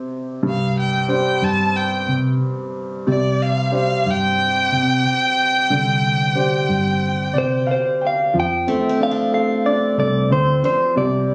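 Acoustic folk-pop ballad at 91 BPM in F major with a heartfelt, hopeful mood, where a woody, long-sustaining upright piano and a dark, round, foam-muted vintage electric bass support a rich, focused bowed violin with vibrato that leads the opening, before a clean, scooped, compressed electric guitar with harmonic tremolo takes the melody at 7.4 seconds and a bright, full-bodied steel-string acoustic guitar adds picked arpeggios from 8.7 seconds, all under light reverb.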